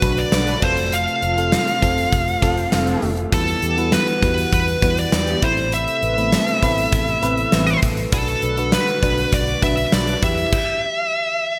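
Bright, polished 1980s-style digital production with a lush hall reverb frames this moody, nostalgic pop passage in E minor at 100 BPM, cut from a longer piece. A dark, distorted high-gain lead guitar carries the melody up front with delay, over glassy, bell-like FM electric piano chords that warble with chorus and phaser and add a short fill at 2.1 seconds, while a shimmering pulse-width pad and round, brassy synth stabs sit in the background. A punchy, foam-muted fingered bass and a gated drum kit with bright cymbals, snare, kick and tambourine drive the straight 4/4 groove until the stop at 10.5 seconds, while the guitar carries on until 11.6 seconds.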